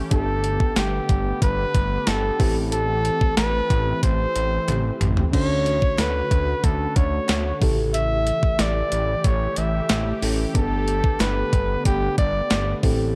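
1980s-style pop with a glossy, romantic mood, cut from a longer piece, in which a flugelhorn with vibrato and delay carries the melody up front over a fat, saturated analog bass and a thumpy, overdriven 12-bit drum machine that plays a fill at 4.7 seconds, while a round, warbling FM electric piano with chorus and phaser and an airy, detuned, filter-swelling pad sit in the background, a barely audible group handclap adds a hollow touch, and light reverb gives the production a dark, warm sheen.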